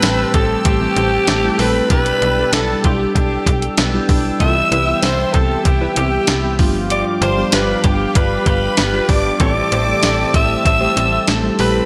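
A raspy, gritty alto saxophone carries the melody up front from the first second, its scooped notes and vibrato ringing through tape and slapback echo over a thumpy, sampler-style drum machine with a fat snare, hi-hat and tambourine. This is uplifting, nostalgic 1980s-style pop at 96 BPM in straight 4/4. Underneath, a snappy FM bass with a metallic attack holds the low end while glassy digital keys play the accompaniment through chorus and slapback echo. A brassy, bold analog pad sustains evolving chords, a lush studio violin section adds a bowed second line high above the sax, and a bright, twangy twelve-string electric guitar plays a riff in the background. From 0.8 seconds a punchy, detuned polysynth adds funky, mellow stabs, as the harmony moves from Am7 through Em7/B, Cmaj7 and G7 before returning to Am7. A moderate digital hall reverb gives the whole mix a big arena sound in this short cut from a longer piece.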